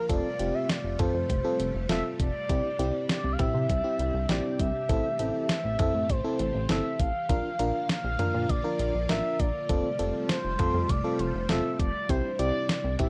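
Nostalgic and bright, this synth-pop passage, cut from a longer piece, sets a round, horn-like synth lead with chorus, phaser and vibrato up front over a lush string machine ensemble with phaser and ensemble chorus, a tremolo-laden FM electric piano and a glossy, nasal chorused synth bass. A clean 12-bit digital drum machine with a thumpy kick and fat snare, re-recorded in a small room, drives the straight 4/4 groove with hi-hat and toms. The dry, gritty hardware sound carries a chord cycle of Fadd9, Cadd9, Am and Bb throughout the 13.1 seconds.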